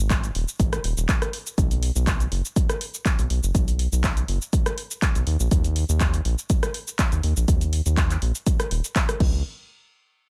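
A 4/4 deep house groove at 122 BPM, swung 54% on the sixteenths, drives this soulful, sunny excerpt from a drop, where an overdriven, layered electronic kick with a deep body sits up front beside a round, dark analog bass of sawtooth and sine tones with ring modulation and sidechain pumping, while a punchy analog drum machine adds crash cymbal, handclaps, hi-hat, rim click and shaker in a dry mix.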